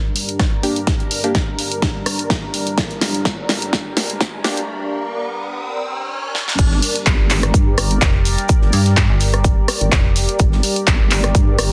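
A dense, heavily limited modern master with light reverb and a high-pass filter frames this bouncy, gritty bass house cut. It runs at 126 BPM in 4/4 with a 16th-note swing, in G minor, and is taken from a longer piece. An evolving sawtooth pad with a sub octave holds a G minor chord throughout, its chorus and sidechain pumping giving it a breathing pulse. Up front, a punchy layered electronic kick drives a big-room kit with a huge snare, handclaps, hi-hat, rim click and crash cymbal. The opening build-up brings a drum fill, a band-passed, nasal chord stab with tape echo under a filter sweep, and an electronic riser, before a short break. At 6.6 seconds the drop arrives with a dark, wobbling vowel-sweep bass and a very quiet, airy shaker and high-tuned snare, while a metallic, overdriven FM bass cuts in from 8.0 to 10.3 seconds.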